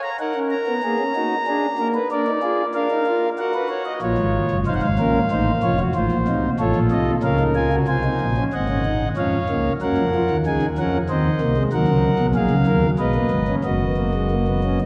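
A pipe organ on a principal stop plays alone throughout the recording, performing a solemn, contemplative baroque-style fugue in four parts. Its tone is smooth and warm, with a baroque voicing and a touch of chiff at the start of each note, and it sits up front in the sound. The music moves in a steady, straight triple metre, ranging from deep pedal notes to high treble lines, with the instrument tuned to A4 = 437 Hz. A wet cathedral reverb with a long tail of several seconds surrounds the organ, giving the lines a spacious, hallowed resonance. The first section gives way to a second at 7.9 seconds, which moves on before settling into a final chordless moment near 13.6 seconds. The passage is cut from a longer piece and ends at 14.9 seconds.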